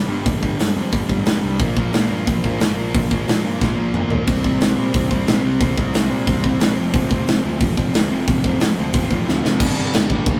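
Raw and angry, this punk rock excerpt charges along at 180 BPM as two sludgy distorted guitars churn out an overdriven riff over a growly fuzz bass, a big rock drum kit with punchy kick and bright cymbals sits up front in a pumping room with fills at 3.6 and 9.3 seconds, and a biting double-tracked guitar joins at 9.6 seconds on a Gm chord, all captured as a rough rehearsal-room recording with tube saturation and light reverb.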